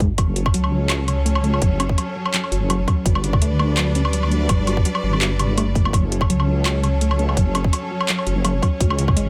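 Half-time drum and bass in F# minor at 167 BPM, this cinematic, heavy excerpt moves with a slight swing on the sixteenths over a half-time groove. A deep, dark wobble bass sits up front from the start, its sawtooth-and-sine tone compressed and thickened with chorus, while a tight, layered electronic kick punches alongside it. The drum kit adds handclaps, metallic hi-hats and woodblock, both drum parts carrying the boxy character of a small room. A warbly, lo-fi pluck with a detuned, sub-octave edge plays arpeggios through chorus and dub echo, a filter sweep running across it for the full 9.3 seconds. From 0.2 seconds a clear, focused bowed string section holds sustained chords with vibrato, pumping under sidechain as the harmony moves from F#m to G and back to F#m, all set in light digital ambience.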